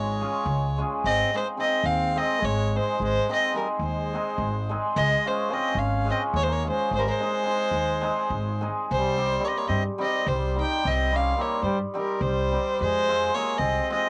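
Set in a 7/8 at 214 BPM counted in eighths with a straight feel, this wild, festive Balkan wedding-band piece is cut from a longer performance. A single bowed fiddle carries the melody up front, its tone rich and earthy with light vibrato and an airy bow, sitting close in the sound. Beneath it a mellow trumpet plays a second line with a soft attack and a classical bearing, heard distant and roomy, while a bright cimbalom fills in hammered, shimmering, ringing accompaniment. A plucked upright bass with steel strings gives a woody, thumpy low end, also placed up front, and drops out at 13.8 seconds just before the close. The harmony moves between Db and Ab before shifting to C minor at 8.9 seconds and F minor near the end, all captured as a home cassette recording with dulled highs and a moderate, short booth ambience.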